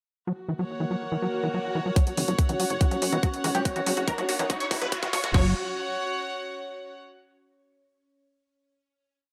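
Psychedelic trance at 142 BPM in F# major, driving and psychedelic, opens at 0.3 seconds with a squelchy, gritty acid bass line drifting against the bar and a close, reedy chamber string section playing slowly shifting chords, while an evolving, morphing wavetable pad with chorus and a swell and riser fill the background through a filtered intro. At 2.0 seconds the build arrives: a tight electronic kick drives four-on-the-floor up front, an overdriven dance kit adds hats and crash, and a detuned supersaw stab repeats a riff over a pedal note. From 2.2 seconds a galloping sixteenth-note sequencer bass pulses underneath, with filter sweeps, sidechain pumping and a drum fill pushing toward the peak, as a very quiet resonant blip pluck adds short answering phrases. The strings sustain alone into a final chord that closes the piece at 7.0 seconds, set in a moderate digital room reverb.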